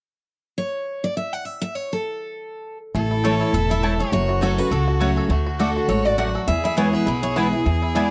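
Swung eighth notes propel this driving, virtuosic bluegrass excerpt, where a bright, full-bodied picked acoustic guitar carries the melody alone from 0.6 seconds until the band arrives at 2.9 seconds: a twangy fingerpicked banjo adds its own melody in the background, a clear, boxy fiddle with light vibrato plays a second line, a thumpy upright bass sits up front, and a second picked acoustic guitar with fresh strings and finger squeak joins in accompaniment just after, along with woody mandolin stabs, all over an A, F#m, D, E progression in a dry, close 1970s-style studio sound with light reverb.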